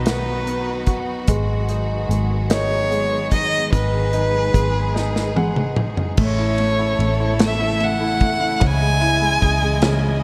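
A rich, up-front bowed violin with vibrato carries the melody of this melancholic, dramatic six-eight pop ballad at 49 BPM, over clear baby grand piano touched with subtle chorus, lush close strings, a round, foam-muted electric bass and a modern drum kit with a tight kick and gated reverb whose fill at 5.0 s leads from B and G#m7 into A and C#madd9, all set in a lush hall with bright 1980s-style digital sheen in this cut from a longer piece.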